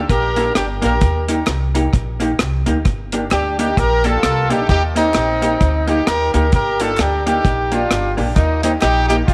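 A pizzicato upright bass opens this mischievous, driving ska piece in G minor at 131 BPM with a swung feel, its woody tone sitting up front as the chords move between Gm and Eb. A punchy, vibrato-rich horn section carries the melody almost at once alongside a dark reggae kit of tight kick, hi-hat and rim click, both touched by tape echo, while a clean, compressed hollow-body jazz guitar, also echoed, joins at 0.4 s. Very quiet, hollow group handclaps sit low in the mix, and a moderate echo chamber reverb lends the mix a vintage studio room.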